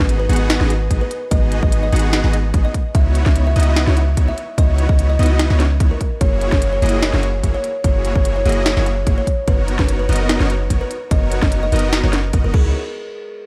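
Bittersweet and emotional, this half-time future bass drop, cut from a longer piece, sets a woody, ringing kalimba melody with digital delay over huge, detuned supersaw chords roughened by 12-bit sampler grit and a deep, boomy 808-style bass with tube saturation, all three pumping under sidechain compression, while a trap kit's sharp snare and crisp hats and a hard-clipped kick entering at 0.9 seconds drive the swung groove through a G#m7 to C#m11, F#9 and Bmaj9/F# progression in a fairly dry, up-front mix.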